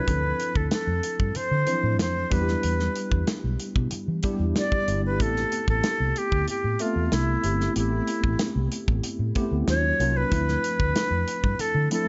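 Polished 1980s jazz-funk pop with a bittersweet, slick mood, this brief excerpt puts a breathy, close-miked silver concert flute up front on a tongued, expressive melody, over a worn, slightly out-of-tune tine electric piano with analog chorus, a dark, round, foam-muted fingered electric bass, and an up-front acoustic drum kit of hi-hat, tight kick and snare in a small room, with chords moving from Dm9 through Em7 and Am7 to a brief D#m9 before returning to Dm9.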